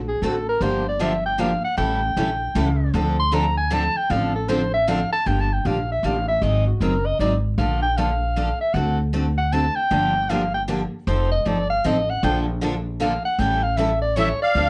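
A woody, thumpy upright bass opens this swinging slice of acoustic string jazz in triple time, joined almost at once by a mellow soprano saxophone that carries a virtuosic, vibrato-laden solo across the whole passage. Two bright, picked steel-string acoustic guitars supply the accompaniment with audible finger squeak: one steady throughout, the other sitting out between 5.0 and 9.9 seconds before returning, its fuller dreadnought body thickening the comping. The saxophone's smooth top and jazz phrasing ride up front over minor-key changes that move through dominant and major-seventh colors. Just at the close, at 14.2 seconds, a reedy, shimmering musette accordion slips in with a dark, smooth melodic touch. A moderate club reverb frames the group, and this fragment of a longer piece carries the warbling pitch drift of worn old cassette tape.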